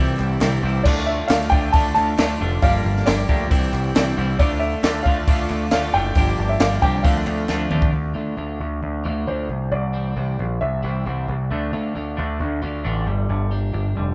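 At 135 BPM in D minor, this cool, restless indie rock passage opens with the band playing live in a large room, a worn, woody upright piano carrying the melody over a faint, silky string machine holding sustained chords. A bright, overdriven stack guitar and a clean, compressed twelve-string electric guitar both play riffs, the twelve-string sitting in the background. Up front, a growling, punchy overdriven bass anchors the low end, while a compact cocktail drum kit with a punchy kick, high-tuned snare and dark cymbals enters moments later to drive the straight 4/4 feel, joined by very quiet, crisp group handclaps. The harmony moves through C, Dm and Gm7, and a drum fill at 7.5 seconds leads into a sparser second section where the drums, claps, strings and stack guitar drop out. The piano continues until 11.2 seconds, after which the stack guitar returns to join the twelve-string and bass as the fragment, cut from a longer piece, closes on Gm.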